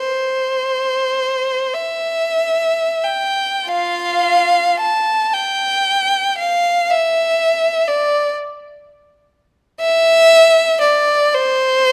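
A clear, focused solo violin sings a serene, lyrical line with vibrato in a free, rubato classical piece in 6/8, close and up front, with the bowed tone set in a moderate recital-hall reverb across this brief 11.9-second fragment of a longer work.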